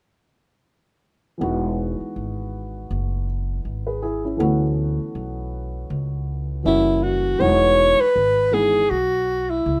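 A breathy alto saxophone takes the melody at 6.7 seconds, played close-miked and intimate in a jazz style, with subtone, scooped notes, vibrato and a soft, whispered attack, all thrown back by a slapback echo. It sits over a relaxed, smooth hip hop groove with a swung sixteenth-note feel. From 1.4 seconds a dark grand piano supplies mellow, vintage-toned chords, moving from Emaj7 through Dmaj13 and F#7b9 before returning to Emaj7, and it drops out at 8.8 seconds. Beneath it, a pizzicato upright bass with steel strings gives a woody, growly low end that carries on to the close. The piano and bass sit up front, and the sax is mixed louder than either. Light reverb and a rough home demo mix give this cut from a longer piece an unpolished character.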